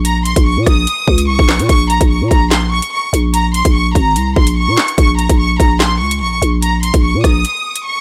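A lush, bowed violin section opens this tense, cold drill excerpt together with a growling 808-style bass and an electronic drum kit, all starting at once on a Bb minor chord. The tempo is 146 BPM in 4/4 with a half-time feel, giving the hip hop groove a heavy, deliberate weight. Carried high in the register, the strings play the melody with expressive vibrato and a soft attack, their ensemble sound trailed by delay. Beneath them the buzzy, sine-based bass hits with a fast attack and decays, while the kit sets a hard-clipped kick against a woody snare, metallic hi-hats, handclaps and rim clicks, all with a tape-warm character. Bass, drums and violins sit up front in a digital ambience. At 7.4 seconds the bass drops out for a brief break, and the drums follow at 7.8 seconds, leaving the violins to ring on alone until the fragment cuts off at 8.0 seconds.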